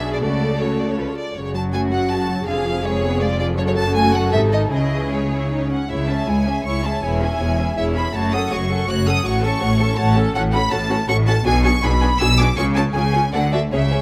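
An intense, up-front violin section carries the melody with vibrato, reaching up to F#6, over a lush, focused second violin line and a smooth, studio-toned viola accompaniment in this stormy, urgent classical-period movement for string orchestra, taken quickly at 161 BPM in 3/4 with rubato. Cellos and double basses hold the bass from a more distant position, the cellos clear and even, the basses rich with light vibrato, as the harmony moves from F# minor to C# minor at 3.6 s and back to F# minor at 10.3 s. Light reverb and close, detailed miking frame this fragment of a longer piece, which ends on a D chord at 13.3 s.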